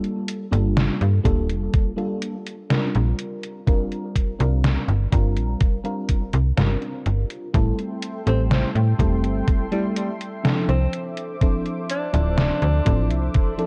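Vaporwave at a slow 62 BPM in G dorian, this melancholic, hazy fragment of a longer piece drifts through Gm9, C9sus4, Am7 and Dm9 chords. A soft, round FM electric piano carries the accompaniment from the start, colored by phaser, analog chorus and analog delay, alongside a detuned 8-bit drum machine playing hi-hat and a medium-tuned snare, overdriven and re-recorded in a small room. A slap-like FM bass with a snappy, metallic attack and tube saturation joins at 0.5 seconds, and a thumpy, overdriven electronic kick follows at 1.3 seconds, both sitting up front. At 7.5 seconds a lush, warbling unison pad of detuned sawtooths swells in with slow attack and chorus, and at 8.3 seconds a breathy alto saxophone takes the melody in a jazz-style subtone, trailed by tape echo. Light reverb and a dark, cassette-tape production give the whole fragment a faded, vintage haze.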